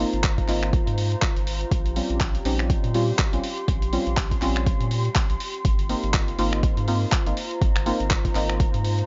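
Hypnotic and deep, this deep house excerpt rides a swung groove as mellow, detuned chord stabs with chorus, analog delay and a sidechain pump move from Ab69 to Bbm69 at 1.7 seconds and back at 5.6 seconds. A round, dark analog bass pumps underneath while an airy, breathy pad with chorus drifts in on a slow attack and lingers with a long release. A deep overdriven electronic kick anchors the beat alongside a gritty, compressed sampler-style kit of finger snaps, handclaps and hi-hat, all in a dry, dusky mix with softened highs.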